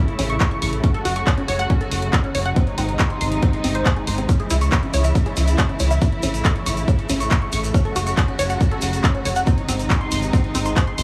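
A lush bowed string section holding sustained chords through a low-pass filter and sidechain pumping opens this emotional, bittersweet uplifting trance excerpt at 139 BPM alongside detuned sawtooth arpeggios carrying chorus, dub echo and their own pumping. They are joined by a layered techno kit of handclaps and hi-hat, a dark, saturated sequencer bass with sidechain pumping, and then a heavy, up-front electronic kick that drives the groove, while a grainy tube shaker enters at 4.3 s, all in a dry, heavily compressed radio-style sound.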